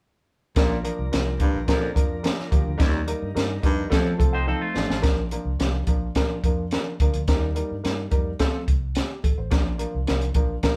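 A straight 4/4 groove at 107 BPM drives this danceable, uptempo 1960s-style soul cut in Bb major, taken from a longer piece. A compact cocktail drum kit sits up front with a punchy kick, a high-tuned snare and hi-hat, its sound dark and rolled-off on top. A foam-muted, round fingered electric bass carries the low end. A worn, woody upright piano comps throughout, intimate and slightly detuned, with its action noise audible. In the opening stretch, a baritone saxophone plays a low riff in a clear, jazz-style subtone with soft attack and vibrato until 4.1 seconds, while a flute-like tonewheel organ holds mellow chords in the background through a slow rotary speaker. A bright, picked electric guitar riff slips in at 4.3 seconds during the piano fill, shortly before the drums fill at 4.5 seconds, and from 5.0 seconds the band settles into a second section over a simple Bb, Eb and F progression, with the live-in-one-room sound wrapped in moderate studio reverb.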